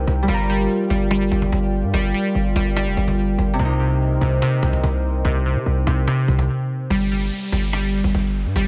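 A glassy, chorused arpeggio on digital keys with digital delay opens this menacing trap excerpt, together with a hard-hitting 808-style bass, a Celtic harp and a dark analog pad, and a woody cajon joins at 0.1 seconds. The half-time groove moves from Gm7 to Cm7, with the punchy, heavy bass and the airy keys up front while the fingerpicked, ringing harp stays in the background. Beneath them, the detuned sawtooth pad holds deep, moody sustained chords with a slow attack, long release and chorus. The cajon brings an acoustic, small-room character with faint snares, and the whole mix carries a light studio reverb. After a brief break, the pad stops at 6.9 seconds and the harp at 7.0, and an electronic downlifter enters over the remaining keys, bass and cajon.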